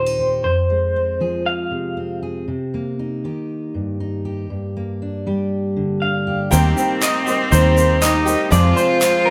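Warm and nostalgic, this indie folk excerpt opens with a full-bodied fingerpicked steel-string acoustic guitar under a slightly broken-up, lo-fi electric guitar melody with tremolo, then builds at 6.5 seconds as a smooth bowed cello second line, a shimmering octave-doubled twelve-string, a brilliant upright piano with audible action noise, distant stopped French horns, a round, dark fingered bass and a grainy tube shaker join in, with crisp group handclaps arriving at 7.0 seconds, all set in a large studio reverb.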